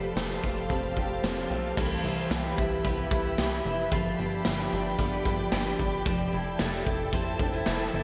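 A raw garage drum kit sits up front in this dreamy, ethereal dream pop excerpt at 112 BPM, its boomy kick, medium-tuned snare, hi-hat, tambourine and crash treated with gated reverb, coming in at 0.2 s and dropping out at 7.8 s. Around it, a picked twelve-string acoustic guitar spins dark, shimmering octave-doubled arpeggios through lush chorus and delay, an airy, warbling pad holds detuned sustained chords, and a plucky analog bass adds punchy, decaying notes beneath. The chords move from Fadd9 through Cmaj7 and G7 to Fmaj7 in F lydian, framed by a bright 1980s-style digital production with a lush hall reverb.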